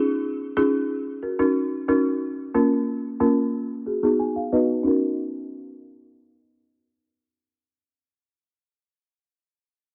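A woody, rustic folk marimba struck with medium hard mallets provides the accompaniment in this hypnotic, tough dancehall excerpt, sitting up front through a low-pass filter with a filter sweep shaping it until 4.9 seconds. At a straight 91 BPM in Eb minor, it moves through Dbadd9, Ebm7, Bbm and B6, with a short marimba fill at 3.9 seconds leading into a new section that returns to Ebm7. The boxy tone of the bars is set inside a moderate echo chamber reverb, giving the mix an echo-heavy character.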